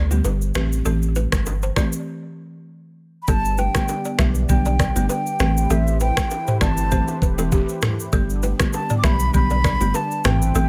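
A lightly swung afrobeats groove at 99 BPM in G major rides on an electronic afro-pop kit with a knocking kick, finger snaps, rim clicks, shaker and toms, under a deep, punchy sub bass and faint, saturated bongos and congas, all in a small room for a sunny, breezy feel. A dry, woody balafon riff with tape echo and a buzzing marimba played with medium mallets carry the opening over G and Am7 chords, and a break arrives at 2.1 seconds. From 3.2 seconds a mellow, hollow silver flute takes the melody with vibrato and tape echo, while a smooth, detuned sawtooth pad with chorus and sidechain pumping sustains softly in the background.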